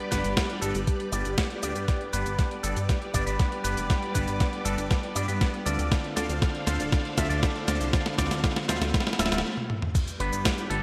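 A bright, 1980s-style digital production bathed in lush hall reverb opens this short excerpt of italo disco, which moves at 119 BPM in a straight 4/4 with a melodramatic, bittersweet mood. A vintage string machine holds sustained, full-bodied chords with a slow attack and ensemble chorus, while an electric guitar run through an envelope filter adds twangy, picked stabs coloured by 12-bit sampler grit and digital delay. Beneath them, a chorused synth bass with a glossy pulse-wave and sawtooth tone and a fast filter pluck anchors the low end. A thumpy electronic kick sits beside a clean 12-bit drum machine placed up front in the mix, whose medium-tuned snare, toms, hi-hat, cabasa and crash carry gated reverb. The harmony rests on G before shifting to Dm7 at 5.9 seconds, and a long drum fill begins at 1.9 seconds, broken by a brief stop at 9.4 seconds before the music lands back on G at 9.9 seconds.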